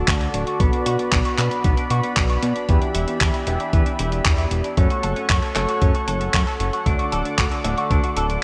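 This playful, romantic italo disco passage opens at once on a smooth, detuned sawtooth pad holding sustained chords, together with a thick, fat analog bass, picked electric guitar arpeggios run through an envelope filter, and stabs from a concert grand piano. At 0.1 s a gritty, tape-warm sampler-style drum kit with handclaps and hi-hat arrives alongside a thumpy electronic kick, which stops at 8.0 s; both drum parts are compressed and were re-recorded in a large room. The tempo is 115 BPM in a straight 4/4, in D major tuned to A4 = 435 Hz, moving through D, Bm, Em7 and F#m before returning to D. The twangy, clean guitar sits in the background under lush chorus and delay. The intimate piano, with audible action noise and deep bass, carries a filter sweep through the whole passage along with low-pass filtering and delay, while the pad adds chorus and tremolo and the bass evolves with its own filter sweep. 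A moderate hall reverb with a 2.4 s decay and bright 1980s-style digital production tie the short section together.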